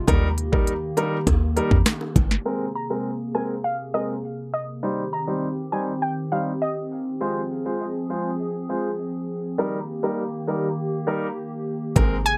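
Lightly reverberant and low-pass filtered, this tough, sultry dancehall excerpt at 101 BPM opens with overdriven electronic drums (knocking kick, sharp snare, crisp hats and rim click), a punchy, tight 808-style bass and distant, high-tuned bongos, all of which drop out around 2.4 seconds and return briefly at 12.0 seconds. Underneath, a hollow, flute-like pad with sidechain pumping and chorus holds sustained chords, while an intimate concert grand piano with audible action noise and long sustain plays accompaniment through Eb, Abadd9, Cm and Fm. A filter sweep runs across the middle stretch, where a round, warbling vintage analog pluck carries the melody from 2.8 seconds with chorus and tape echo.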